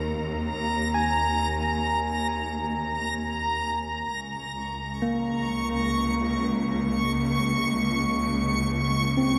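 Spacious and melancholic, this ambient excerpt in free time has a gritty, overdriven tine electric piano fading in over its full 9.4 seconds with arpeggios trailed by diffuse delay, a clear, lush bowed cello section holding the bass with vibrato, and a reversed, detuned granular texture swelling high and bright, set in a huge reverb with cassette tape color as the harmony moves from Eb5 to Bbm7/Db at 4.1 seconds.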